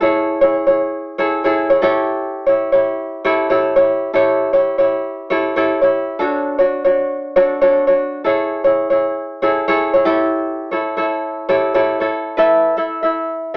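A gentle swing on the sixteenth notes gives this easy-going pop fragment a relaxed lilt in common time. A solo tenor ukulele carries it all, fingerpicked with a bright, light touch and placed up front, moving through a sunny progression from Amaj7 and A7 to Dmaj7 and back, before settling on an Esus4 at 12.4 seconds. Its range sits between D4 and E5, and it is tuned a little below standard pitch. The ukulele has the grainy tint of cassette tape, and the whole recording has a homemade, small-speaker character. A moderate small-room reverb adds a short, intimate ambience to this 13.6-second clip, cut from a longer piece.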